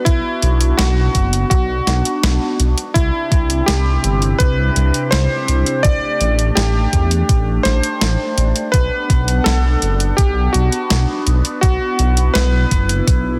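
A straight 4/4 pulse at 83 BPM drives this moody synthwave excerpt in B phrygian, with a thumpy, overdriven electronic kick and a 12-bit drum machine's overdriven snare and hi-hat running from 0.1 to 13.2 seconds under a deep, rumbling, detuned saw bass that sits up front and pumps with the sidechain. A swirling, nasal analog pad holds sustained chords through phaser and chorus, breathing to the same pumping, while a clear electric grand piano with a clangy low end carries the melody through a delay. The chords move from Bm to Cadd9 and A7sus4 before returning to Bm at 8.7 seconds, all set in light reverb with a dense, heavily limited modern master.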